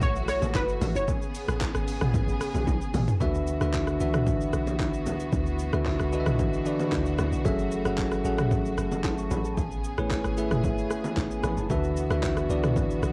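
This amapiano cut, taken from a longer piece, moves at a straight 113 BPM in 4/4 with a hypnotic, late-night mood, opening on a drop over F#m7 and Amaj9. A detuned sawtooth analog pluck carries the melody until 2.9 seconds, its round, evolving tone shaped by a filter sweep, chorus and tape echo. Beneath it, a deep, dark log drum bass with a fast attack and FM bite anchors the low end, while a lush bowed string section holds smooth, vibrato-tinged chords throughout. The punchy, up-front deep house kit lays out kick, handclaps, hi-hat, rim click, shaker and toms, with a drum fill at 2.7 seconds. Bright, hard-handed congas and bongos sit vintage and band-limited in the background. From 3.2 seconds a bell-like, clean tine electric piano takes up accompaniment over D69 and F#m7. The strings carry cassette tape colouring, like the drums and piano, all inside a home cassette recording with light reverb.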